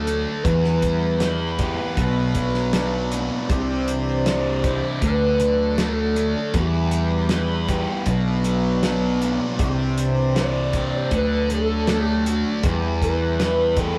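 Psychedelic rock excerpt at a slow 79 BPM in E minor, trippy and dark, where a hollow, woody square lead with chorus, phaser and vibrato sings the melody over reedy, gut-toned chamber strings holding sustained chords, a thick, double-tracked fuzz guitar riff with distortion and phaser, an overdriven, round fingered bass up front, and a cloth-damped, thuddy drum kit with a fat snare and tight kick, all cycling through Em, Bm, Cadd9 and D in a rough rehearsal-room recording with a short, wet small-room reverb.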